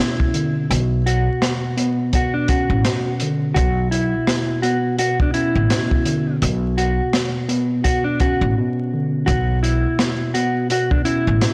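Boom-bap hip-hop in B minor at 84 BPM with a swung sixteenth feel, this moody, gritty excerpt opens on a Bmadd9 chord as a dark, clean electric guitar carries the melody over a worn, slightly out-of-tune tine electric piano, both filtered and up front. A crunchy breakbeat kit with a tight kick, medium-tuned snare, rim click and hi-hat enters at 0.2 seconds, and a woody pizzicato upright bass with transformer saturation joins at 0.7 seconds, with a brief break from 8.6 to 9.3 seconds. The whole mix sits in a small room with light reverb, blown-out and overdriven, dusted with vinyl crackle.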